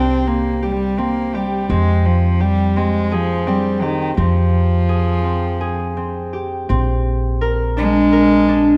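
Urgent and hypnotic, this short excerpt of contemporary chamber music moves in an uneven 7/8 metre, with a dark, reedy cello carrying the melody in a nasal, gut-string tone with light vibrato, bowed by a single player in period style. Above it, a concert harp rings out fingerpicked arpeggios, and an upright bass adds thumpy, woody pizzicato beneath, all three parts sitting up front on a moderate scoring stage with a dark production. The harmony moves from C5 to F minor at 1.7 seconds, then shifts to Bbadd9 at 6.7 seconds as a new section begins.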